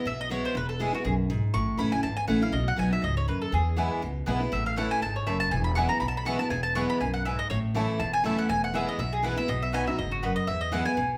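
A bright, up-front mandolin lead and a full-bodied, picked dreadnought guitar open this rustic, joyful bluegrass fragment at a brisk, swung pace, with a dark, thumpy gut-string upright bass plucking beneath them almost at once, while a second, mellower double-strung mandolin adds woody stabs from 3.8 s, the band playing live together in one room drenched in a large-studio reverb.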